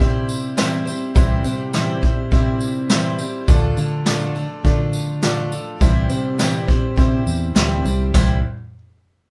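Over a straight 4/4 pulse from an up-front vintage brush kit with a punchy kick and dark cymbals, this uplifting, anthemic indie folk excerpt layers a shimmering picked twelve-string acoustic guitar, a round fingered electric bass, a woody, boxy upright piano and a jingly tambourine, played together live in one studio room as the harmony moves from C to Dm at 3.5 s and back to C before a new section arrives at 8.1 s.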